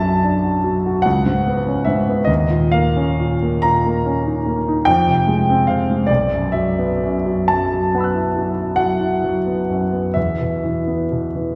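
Nocturnal and wistful, this short passage from a longer impressionist solo piano work drifts in 9/8 at a slow 41-50 BPM counted in dotted quarters, with a free, rubato feel. A warm, intimate concert grand carries everything alone, reaching from deep bass up into its high register, with the noise of its action audible and a natural, up-front presence. It sits inside a wet concert hall reverb heard from further back in the room, while the harmony wanders from Bm7 through Fm and B7sus4 before settling on E5 near 10.2 seconds.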